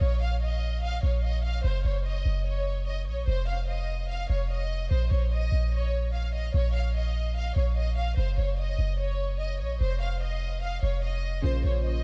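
A deep, boomy 808-style bass sits up front through the whole 12 seconds, its clean sine tone striking fast and decaying dark beneath a brooding, menacing hip hop groove at 147 BPM in a half-time feel. Above it, a violin section plays the melody in a soft-attacked, pure, floating sul tasto voice, bowed close and kept low in the mix with a low-pass filter and delay. The harmony circles in Bb minor, moving from Bbm to Gb5 to a rootless Dbadd9/F and back, finally landing on Bbmadd9 at 11.4 seconds. At that same moment, glassy digital keys enter briefly, their bright sine tone treated with chorus, phaser and a filter sweep. Light reverb lends the piece a digital ambience, and the passage is cut from a longer piece.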